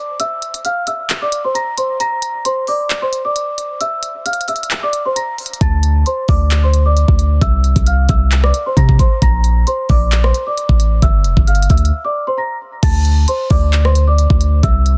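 A half-time trap groove at 133 BPM in D minor sets a melancholic, dark hip hop mood, as a knocking, overdriven kick, crisp hats, handclaps, rim clicks and crash cymbal enter at 0.2 seconds beneath a delicate, bell-like celesta melody softened by a low-pass filter and digital delay, until a deep, boomy 808-style bass with a sine tone and a noise layer arrives at 5.6 seconds, the close, dry, heavily limited mix forming part of a longer piece.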